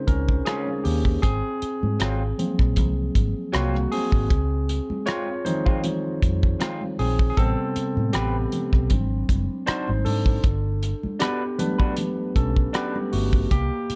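A dark, warm studio sound frames this short excerpt of lush 1970s-style soul, smooth and silky at 78 BPM with a light swing on the sixteenths. A bright, barky tine electric piano, lightly overdriven and up front, takes a solo over the full 14 seconds through chords moving from Bbm7 and Ab13 to Dbmaj7, Am9 and Gmaj7, while a foam-muted, round vintage electric bass and a cloth-damped, thuddy kit with tight kick, hi-hat and rim click hold the groove. Soft-handed congas sit in the background, and a slightly broken-up, lo-fi electric guitar through a small old amp plays a riff from 0.5 to 13.0 seconds.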